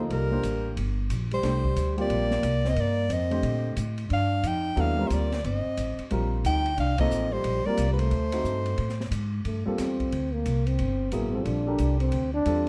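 A clear, close-miked soprano saxophone carries the melody up front in this cool, hypnotic modal jazz excerpt, shadowed by a breathy, mellow trombone with light vibrato as the second line. A woody pizzicato upright bass, a dusky baby grand piano and a small-room acoustic drum kit with shadowy cymbals, a high-tuned snare and a boomy kick swing underneath. After a band accent at 6.9 seconds and the saxophone's exit at 9.1 seconds, the trombone solos from 9.5 seconds as the harmony moves from Cm11 through D7b9 to Gm11, all under light reverb.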